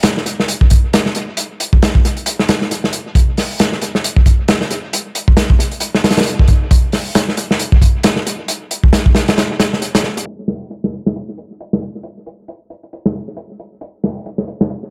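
Breakbeat excerpt at 135 BPM in 4/4, funky and energetic, with a swung 16th-note feel. A crunchy, saturated acoustic drum kit of kick, snare and hi-hat sits up front through tape echo, its punchy kick, medium-tuned snare and dark, rolled-off top giving it a gritty small-room character. The echo-heavy, low-pass filtered mix carries light reverb, and a filter sweep enters at 10.3 seconds and runs to the close.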